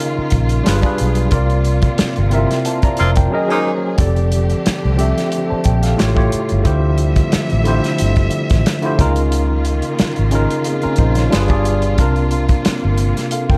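A worn, slightly out-of-tune tine electric piano, lightly overdriven and bathed in plate reverb, accompanies this relaxed, sensual neo-soul R&B excerpt, moving through lush extended chords like Db69, G7b9 and C7sus4 with a gentle sixteenth-note swing. Underneath, a round, punchy muted electric bass and a dark, smooth small-room soul kit with a tight kick sit up front, while a bowed string section adds soft vibrato pads. A band accent brings a tight, bright saxophone section stab at 3.0 seconds, shortly before the drums drop out from 3.3 until 4.0 seconds, and the electric piano adds a short fill at 13.3 seconds.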